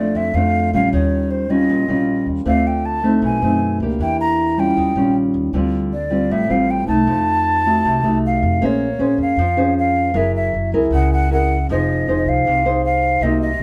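A hollow, airy jazz flute sings the melody up front over a small, thumb-plucked nylon-string guitar, with finger squeak, and a woody pizzicato upright bass, all entering together at 0.0 s in this smooth, wistful bossa nova at 156 BPM. The band plays live in one room with a moderate studio reverb, the flute's mellow straight tone sitting beside the guitar's warm chords. At 8.6 s the harmony turns darker as the music settles into Bb minor, giving the cut from a longer piece a gently melancholy lift.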